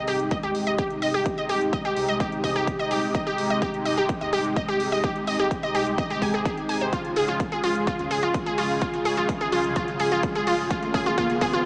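A warm, detuned sawtooth pad and a bright, up-front unison pluck open this uplifting, hopeful progressive house excerpt at 127 BPM in Ab major. The pad holds sustained chords with a soft attack, chorus and a moving notch, while the lush, detuned pluck plays arpeggios through digital delay and a filter sweep. Both breathe with sidechain pumping over an Abmaj7 chord that shifts to Db/Ab at 6.9 seconds, where a drum fill begins. Underneath, a deep, thick sub bass with tube saturation sits in the background, and a punchy, layered electronic kick and metallic hi-hats drive the straight 4/4 build-up. A very quiet riser enters at 9.3 seconds as the build-up continues. The whole mix floats in a huge ambient reverb with a small-speaker character, creating a sense of hopeful anticipation.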